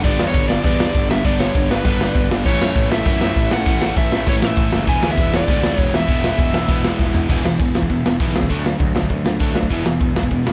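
Punk rock at 199 BPM in a straight 4/4, upbeat and rebellious, cut from a longer piece. A raw garage drum kit sits up front, with a boomy kick, a medium-tuned snare, hi-hat, ride, crash and toms in a small, pumping room, its sound saturated and gritty with a rolled-off top. Behind it, two bright, picked electric guitars grind out riffs through distortion, joined by a very quiet, double-tracked, compressed fuzz guitar and a growly, fuzzed electric bass. A crunchy overdriven guitar carries the melody over the chords G, A and E, then stops at 7.0 seconds as a short drum fill leads into a new section at 7.3 seconds, where the harmony moves to D and back to E. The mix is dry, with little reverb and a dark upper edge.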